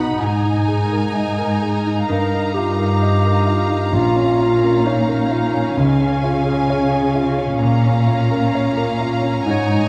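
A slow, rubato 4/4 pulse at 65 BPM carries this emotional orchestral film cue, an uplifting and moving passage cut from a longer piece. A lush symphonic violin section sings the melody high in its range with a smooth, focused top, while a close-miked solo clarinet in classical style and a second, studio-sounding violin section trace supporting lines beneath it. A clear, slightly worn grand piano provides the accompaniment alongside a rich viola section set in the background, and a very quiet concert harp adds ringing, fingerpicked arpeggios. Up front, the cello section anchors the bass with soft attacks and expressive vibrato. The harmony moves through Absus2, Ebadd9/G, Bbm, Db and back to Bbm, and the whole sits in a moderate recital hall reverb with a dark, warm production.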